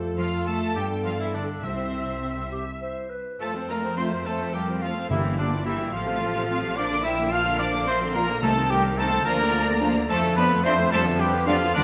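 Lively and cheerful, this quick classical-period movement in 6/8 for symphony orchestra sets a lush, focused violin melody over bowed violas, cellos and double basses, mellow sustained French horn chords, a very quiet, intense second violin line and a distant cor anglais, with a roomy clarinet appearing briefly at 2.5 s before a tongued flute group and punchy trumpet stabs arrive at 3.4 s, while hard-mallet timpani sit in the background and a moderate scoring-stage reverb surrounds the ensemble.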